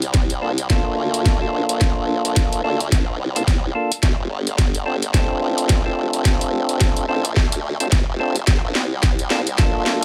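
A gritty, up-front mix with digital ambience frames this funky, swaggering glitch hop build-up, where a compressed, overdriven electronic kick thumps under a layered drum kit of cracking snare and bright hats, while a chorused formant-sweep wobble bass, fat percussive tonewheel organ stabs with tape echo, sidechain pumping and a filter sweep, and a very quiet, moody detuned analog pad that enters at 5.1 seconds build through a drum fill over shifting minor-seventh chords.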